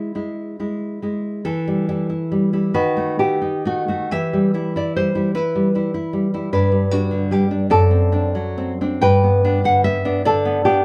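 A deep, up-front nylon-string guitar fingerpicks the accompaniment beneath the dark, fingerpicked melody of a flamenco guitar in this lyrical, warm romantic duo excerpt in E minor and 6/8, moving with rubato at 43-51 BPM through Em, B7/D#, G and D7/F# harmonies, tuned to A4 = 438 Hz and played live together in one room with moderate studio reverb.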